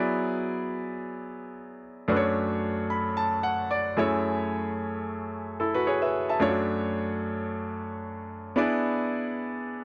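A dry, close studio sound in a 1970s style frames this short cut from a longer pop piece, with only a light reverb around it. A lone concert grand piano carries the whole passage, its tone clear and polished, with a deep bass, a short sustain and an up-front placement. The tempo sits at 111 BPM in 4/4 with a gentle swing on the sixteenths, and the mood is nostalgic and moody. Harmony hovers over an F# bass, moving through E7, Dmaj7 and Amaj7 colours before arriving at a plain E7 as a new section begins at 8.6 seconds. A piano fill runs from 2.6 to 4.3 seconds, and the part ranges from F#2 up to B5.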